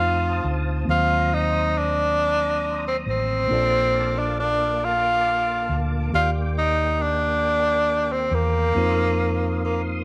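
Unfolding in a slow 6/8 with a straight feel, this short gospel passage, cut from a longer piece, carries an uplifting, soulful mood. A breathy tenor saxophone sits up front as the solo voice, playing the melody in a clear, pop-style tone with vibrato until 9.8 seconds. Beneath it, a mellow tine electric piano supplies clean, direct accompaniment across a broad range, while a tonewheel organ holds sustained chords in the background through a slow rotary speaker and chorus vibrato. A hollow-body, short-scale electric bass, fingered and amped, grounds the harmony with a dark, round sound. The chords move from F7 to Ebm6, then Bbmaj7 and Ebmaj7, before settling on F7sus4 at 8.8 seconds, all set in a moderate echo chamber reverb.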